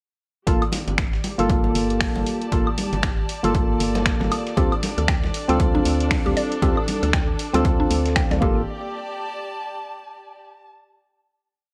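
Late-night and moody, this short deep house piece moves at 117 BPM in G minor with a swung 16th-note feel, opening straight into a drop at 0.5 s where an up-front four-on-the-floor electronic kick, a punchy analog drum machine's programmed hats, snaps and woodblock, and a very quiet gritty sampler-style breakbeat with a fat snare drive the groove, with ringing syncopated congas joining in the background at 0.7 s. A hollow, up-front organ stab plays syncopated rootless chords with chorus and delay over a dark FM bass in a dotted rhythm, both pumping against the kick, while a dark chamber string section with vibrato shifts slowly between Gm9 and Dm7. At 4.6 s a woody, mellow synth pluck adds a repeating 16-step arpeggio with tape character, and the strings hold alone on a final Gsus2 through to 10.7 s, all set in moderate plate reverb with a bright 1980s-style digital sheen.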